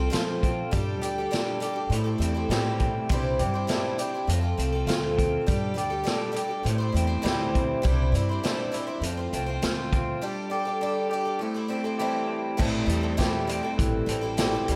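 Hopeful and nostalgic, this short folk rock and heartland rock excerpt moves at 101 BPM in a straight 4/4, cycling through F, Gsus2, Am7 and Cadd9 before shifting to a new section at 12.6 seconds. An up-front, shimmering picked twelve-string acoustic guitar with fresh, octave-doubled strings and a boxy edge carries the accompaniment with slapback echo. Beside it, a twangy, slightly broken-up lo-fi riff from an electric guitar through a small old amp adds vibrato and its own slapback echo, over a woody pizzicato upright bass and a tight, rolled-off vintage drum kit of kick, snare, hi-hat and crash, all bathed in a lush hall reverb for a big arena sound.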